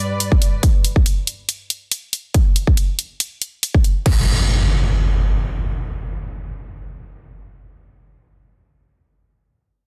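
Heavy and menacing, this short cut from a heavy wobble dubstep track in half-time opens with a brief, dark, sul tasto string section holding a sidechain-pumped chord, then a punchy, up-front electronic kick and a layered dance drum kit with crash and hi-hat drive in with studio reverb until an electronic impact takes over at 4.1 seconds inside a dense, heavily limited digital ambience.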